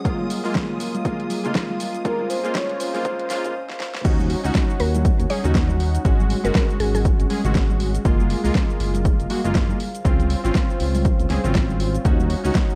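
A punchy, overdriven electronic kick sits up front in this smooth, deep house excerpt at 120 BPM in Eb dorian, joined by an overdriven drum kit with a fat snare, hi-hat, shaker and crash cymbal, plus bright, vintage-toned congas in the background. Round analog keys play stabs through chorus and tape echo over a moody, detuned pad with 12-bit sampler grit, both with sidechain pumping, while a shimmering string-machine violin texture and a breathy flute-like lead with vibrato color the filter-swept build-up before a drum fill leads into the drop at 4.0 s. There a dark, gliding synth bass enters under chords moving through Ebm7, Ab7sus4, Gbmaj9 and Dbmaj7, and a woody, mallet-like synth pluck carries a brief melody.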